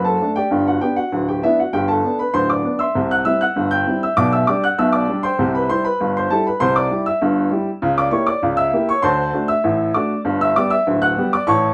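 A straight 2/4 pulse at 98 BPM drives this lively, jaunty ragtime excerpt in G major, tuned slightly low to A4 = 438 Hz. A solo upright piano plays throughout the 11.7 seconds, spanning D1 to G6 with a clear, woody, open tone and long sustain, placed up front in a moderate, short booth ambience. The harmony moves from D/F# to G through C, G/B and a C#dim7 before a D7 resolves home to G at 10.3 seconds, in a passage cut from a longer piece.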